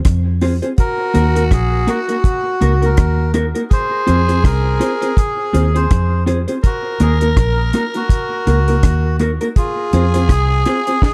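Meditative and hypnotic, this short roots reggae excerpt rides a swung groove of dry, up-front drums with a high-tuned snare and tight kick under a round, foam-muted electric bass, while a mellow, compressed clean guitar enters at 0.4 seconds and a breathy, nasal melodica carries the melody from 0.8 seconds alongside a raspy, growling tenor saxophone line, both bathed in tape echo like the guitar, all within a dark production with light reverb moving between Fm and Ebm.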